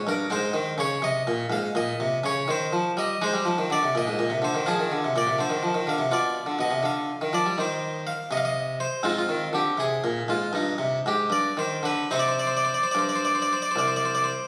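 A solo harpsichord with an airy, round, plucked Flemish-style tone sits up front in this solemn, flowing baroque-style suite movement in 12/8, moving with rubato at 72-86 BPM in dotted quarters and spanning C2 to F5; it settles into C minor from 3.2 s and passes through Dm7b5, a rootless G7/B and Abmaj13 before closing on Cm at 12.1 s, heard through the wet reverb of a scoring stage as captured on a phone in the room, with added studio reverb and compression, in a fragment cut from a longer piece.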